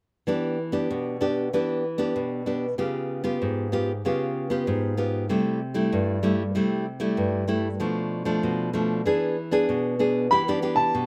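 A straight samba groove in 4/4 carries this nostalgic, lively fragment of a longer piece, where a bright, full-bodied fingerpicked nylon-string guitar sits up front with a slapback echo, moving through Em7, C#7#11, C6 and Bm7b5 to E7, before a smooth, vintage grand piano joins in with a high melody at 10.3 seconds, all under light reverb in an open outdoor setting.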